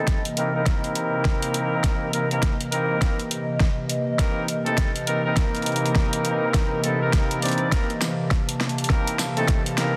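Swung sixteenths at 102 BPM drive this funky, playful glitch hop excerpt, with a knocking, overdriven electronic kick sitting up front beside a pop drum kit of fat snare, warm hats and tambourine, all building through a drum fill across its 10 seconds. A clear, vintage horn section fires octave-doubled stabs with vibrato, low-pass filtering, tape echo and sidechain pumping. Beneath it, a warbling, detuned tape-like pad holds nostalgic, lo-fi chords over a C7#9, colored by chorus and pumping under a plate reverb and a dense, heavily limited master.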